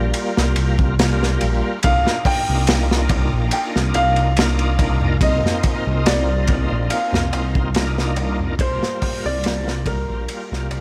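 Steeped in vinyl crackle and a small room's light reverb, this brooding, smoky trip hop excerpt in C minor at 71 BPM sets a soft, felt-muted upright piano melody with audible action noise and tape echo over a shouting tonewheel organ carrying overdrive, chorus vibrato, slow rotary speaker, tremolo and 12-bit sampler grit, a rumbling detuned saw bass up front, a gritty breakbeat kit with punchy kick and dark cymbals, and a very quiet clay-shell darbuka entering at 1.8 seconds, moving from Gm7 through Cm11 and back before fading out from 6.3 seconds.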